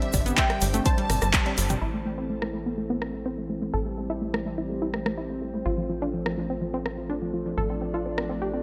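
Progressive house at 125 BPM in A minor, this short cut from a longer track feels expansive and dreamy, opening on a drop where a unison pluck melody and a dark, woody violin section with dub echo sit briefly together before both stop at 1.7 seconds. A lush, thick unison pad holds sustained chords throughout with chorus and sidechain pumping, while a second detuned pluck spins arpeggios coloured by vintage 12-bit sampler grit and dub echo, both opened up by filter sweeps from 1.8 seconds as the harmony moves from Gsus4 to A minor and later F over A. A tight, driving sequencer bass pulses low with a sawtooth and wave-folded bite, pumping against the beat. Up front, a punchy, layered electronic kick and a house kit of handclaps, filtered hats and rim clicks carry the groove, with a band accent at 1.3 seconds. In the background, a grainy egg shaker and electronic toms, bongos and congas, re-recorded in a large room, add texture during the opening drop, all set in a light reverb.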